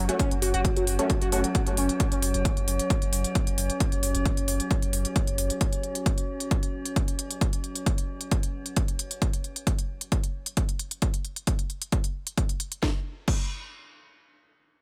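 A straight 4/4 pulse from a punchy, up-front electronic kick and an overdriven techno kit with a cracking snare, smooth hats and crash anchors this hypnotic, relentless peak-time techno cut from a longer piece, where a gritty, screaming sawtooth lead riff with phaser and delay, a round sine sub bass, an aggressive filter-swept rave stab set in the background, and an eerie, metallic FM drone that warbles on all pump against the kick before the kick and kit carry on together to 13.4 seconds.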